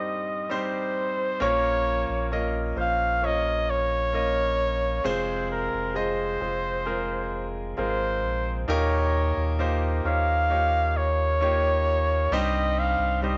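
A moderate spring reverb and a dark, rounded studio sound with softened highs frame this heartbroken, melancholic pop ballad fragment at 66 BPM in a straight 4/4, moving through Cm, Bbm, Fm and Ebadd9. An intimate, polished concert grand piano with audible action noise and long sustain opens alongside a solo flugelhorn melody that carries vibrato, a soft attack and scooped, jazz-style notes. At 1.4 s a deep, round sine sub bass enters up front to anchor the harmony until the end at 13.4 s.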